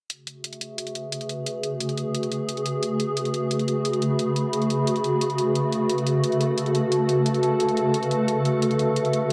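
Dark technical drum and bass at 176 BPM in a straight 4/4, this excerpt sits in F# minor with a mechanical, futuristic mood, holding on a single F#madd9 chord throughout. Electronic hi-hats open the clip at 0.1 seconds, bright and layered with a tape-softened edge. A swarming drone arrives at 0.8 seconds and sits up front, its detuned sine voices massed in unison and breathing in slowly with a granular, tense grain that keeps evolving as it sustains. Just before it, at 0.7 seconds, a warbling, tape-like pad floats above in a higher register, blending square and triangle tones through chorus for a lo-fi, nostalgic haze. Both sustained layers carry their own built-in reverb, and the whole production is dark and wrapped in a lush hall ambience with a 2.2-second decay.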